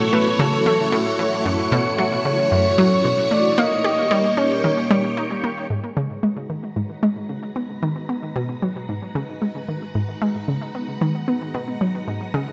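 A round, bright analog pluck drives this hypnotic stretch of sequencer-driven space music at 113 BPM, its detuned riff wet with chorus and tape echo under a lush, vintage string machine thick with phaser and ensemble chorus. A mellow, octave-layered synth lead with vibrato carries the melody until 5.4 s, just before the harmony settles into G# minor at 5.7 s, while an airy, breathy wind-like noise texture hovers high above. A plate reverb lends the whole piece an expansive, spacious feel, and the passage is cut from a longer work.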